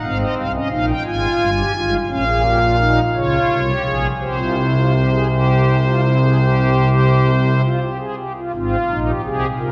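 Serious and driving, this baroque-style three-part fugue in F minor is played on a solo pipe organ using soft, shimmering string celeste stops with a romantic voicing, set up front and moving at 56 BPM in a straight 12/8. The organ spans a range from G1 to Ab5 and settles on an F minor chord over Ab at 8.5 seconds, with a wet church reverb of 3.4 seconds enveloping the sound. Worn, warbling old cassette tape adds pitch drift to this fragment cut from a longer piece, which is tuned to A4 = 435 Hz.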